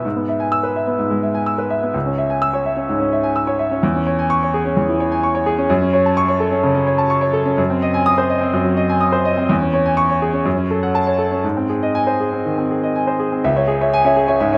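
A clear, up-front baby grand piano plays alone in this agitated, passionate excerpt of a virtuoso classical study, its natural, long-sustaining tone spanning C#2 to E6 with pliant rubato before a new section arrives at 13.4 s, all captured by close, detailed microphones within a moderate concert-hall reverb.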